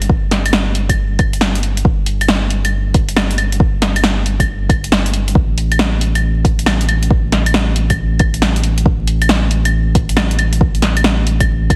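Future garage at 137 BPM in 4/4, with a 64% swing on the sixteenths, this short cut from a longer piece has a rainy, nocturnal mood. A deep house drum kit of claves, hi-hat and a fat snare runs the full 11.8 seconds, layered and tape-warm, with the grain of being re-recorded in a small room, and it sits up front. An electronic kick drum enters at 0.1 seconds, deep and produced, carrying the same small-room re-recording and standing forward as the loudest of the parts. Beneath them, a soft dub sub bass moves between G1 and A1, its round triangle and square-wave tone sustained with a fast attack and pumping under sidechain compression. The whole mix sits in a moderate recital hall reverb and is squeezed into a heavily compressed, radio-like sound dusted with vinyl crackle.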